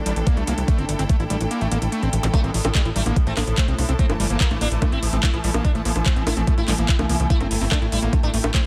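Hypnotic and intense, this psychedelic trance excerpt runs on an overdriven, knocking electronic kick up front, a layered garage kit of bongos, handclaps and metallic hi-hats, and a punchy, wave-folded analog bass with a fast filter pluck. A squelchy, screaming acid riff with distortion, chorus and tape echo sits over a swarming, detuned drone and a lush, bowed string section in the background, both pumping against the kick. The kick drops out from 1.5 to 2.3 seconds, a brief electronic zap sounds at 2.2 seconds, and at 2.3 seconds a buzzing, shimmering sitar melody enters, coloured by phaser, 12-bit sampler grit and dub echo.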